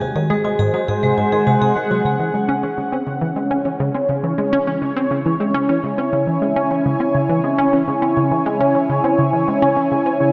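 A sweeping, resonant pad holds sustained chords throughout this mysterious, expansive ambient excerpt in C# harmonic minor at 103 BPM in a straight 4/4. The pad's sawtooth and triangle layers with a sub octave give it an evolving, detuned body, brightened and thickened by chorus. At the start, a vibraphone played with hard mallets sets out metallic, ringing arpeggios over a G#7 chord with medium motor vibrato and tape echo, then falls away at 2.1 seconds as the harmony settles on C#m. In the low register, a tight sequenced synth drives a riff with a fast-attack filter pluck, its sawtooth tone treated with chorus, phaser and tape echo. From 3.8 seconds a very quiet bubbling texture drifts in on a single E4, its random filter steps carrying their own reverb. A lush hall reverb soaks the whole mix in a dreamy haze.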